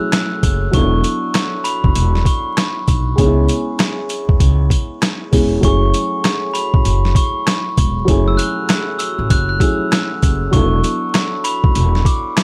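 A glockenspiel played with soft plastic mallets rings a high, bell-like melody over a dark, slightly detuned upright piano with a cassette-tape tint, opening this reflective yet tough boom-bap hip-hop excerpt in F# minor at 98 BPM with a swung 16th-note feel. Gritty, pitched-down sampler drums sit up front, with a thumpy kick, a medium-tuned snare, rim click and hi-hat, alongside a woody pizzicato upright bass on gut strings, while faint, jingly sleigh bells hang in the background. The chords move through F#m7, E7sus4 and C#m7 inside a small-room ambience with vinyl crackle.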